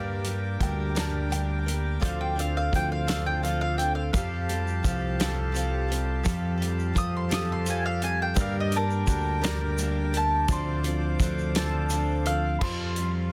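A hopeful, nostalgic folk and heartland rock passage in 6/8 opens on a shimmering, octave-doubled twelve-string acoustic guitar, a twangy, slightly broken-up electric guitar riff, reedy accordion chords, a round, up-front electric bass, a small-room country drum kit with dark cymbals and a tight kick, a boxy, very quiet grand piano, and a vintage upright piano line carrying tape echo. A mellow, woody mandolin takes the melody at 2.0 seconds, and a grainy tube shaker slips in at 4.1 seconds, before the upright piano returns at 12.6 seconds, all in a dry, dense, heavily limited modern mix.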